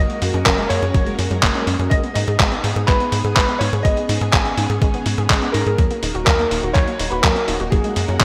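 Bittersweet and nostalgic, this short cut from a longer Italo disco piece moves at a straight 4/4 pulse, its harmony drifting from F#add9 to G# minor and D# minor before circling back. A clear grand piano carries the melody, dressed in lush chorus and digital delay, while a vintage string machine holds full, sustained chords with a slow attack, a sub octave and a long, ensemble-chorused release beneath it. A warbling, lo-fi pluck with a mellow square-and-sawtooth tone spins arpeggios through its own chorus and delay, and a tight, punchy sequencer bass drives the low end with fast-attack, decaying sawtooth notes, a moving notch and tube saturation. The dusty soul sampler-style kit enters at 0.1 seconds with gritty, overdriven handclaps and hi-hat, up front and caught in gated reverb, and a thumpy electronic kick joins at 0.5 seconds. A moderate hall reverb and digital ambience wrap the whole in a bright 1980s-style digital sheen.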